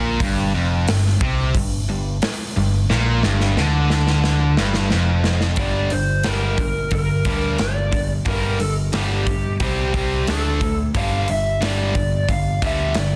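A growly, punchy overdriven electric bass anchors this heavy, driving hard rock excerpt, picked and amped so it sits firmly beneath the riff from the first second. Two overdriven guitars carry the riff together, one bright and picked, the other a sludgy distorted part tucked in the background. A big acoustic rock kit sits up front with a punchy kick, a medium-tuned snare and hi-hat, and a drum fill runs from 2.9 to 5.6 seconds. At 5.6 seconds a dark, lo-fi lead guitar through a small cranked amp enters with a melody, coloured by plate reverb and digital delay. The harmony holds on G minor before moving through C5, D5 and G5 power chords near the end, all within a dense, heavily limited modern master with light reverb on the room.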